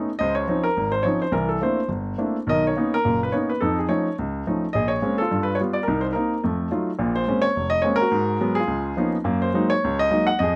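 Close, detailed microphoning and a light reverb put a solo baby grand piano up front, its intimate, natural tone carrying audible action noise and a short sustain. This cool, smoky jazz fragment, cut from a longer piece, swings at a brisk clip through rich extended harmony, moving from Dbmaj9 and C13 to an Faug7 before reaching Bbm9. A new passage begins at 7.0 seconds, passing through Abm7 and Db13 to land on Gb69 as the fragment closes at 10.6 seconds.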